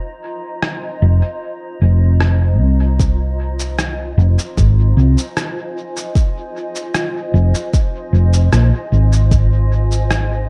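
A straight 76 BPM pulse in 4/4 carries this hazy, meditative ambient dub fragment in F minor, where a cloudy, granular pad holds a blurred Fm7 from the start, a muffled, pitched-down rim click and cabasa with dub echo enter at 0.6 seconds, a round, hollow-body fingered electric bass sits up front from 1.0 seconds, and a deep, overdriven electronic kick arrives at 3.0 seconds, all within a dark digital ambience.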